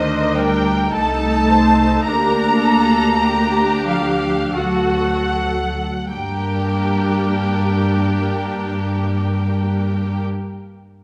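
In a rubato 3/4 that drifts between 36 and 56 BPM and slows through the opening 6.1 seconds, this fragment of a slow, romantic G minor movement for muted string orchestra carries an elegiac, yearning mood. The muted first violins sing the melody up front with a veiled vibrato, while the lush second violins trace a line beneath them and the violas add smooth-topped accompaniment. The close cellos and dark, prominent double basses anchor the harmony as it moves from Ebmaj7 toward D and settles on G minor at 6.1 seconds, all wrapped in a recital hall's reverb.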